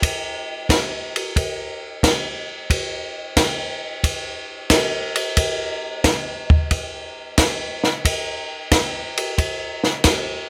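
A compact cocktail drum kit sits up front in a moderate club reverb, its acoustic sound dry and natural despite the room around it. This short jazz excerpt, cut from a longer piece, swings in 4/4 with a greasy feel on the eighth notes. The kit works through hi-hat, kick drum, ride cymbal and snare drum, with dark cymbals shading the groove, a high-tuned snare cutting through and a punchy kick anchoring the bottom. The drums play alone from 0.0 to 10.3 seconds, carrying the whole passage by themselves.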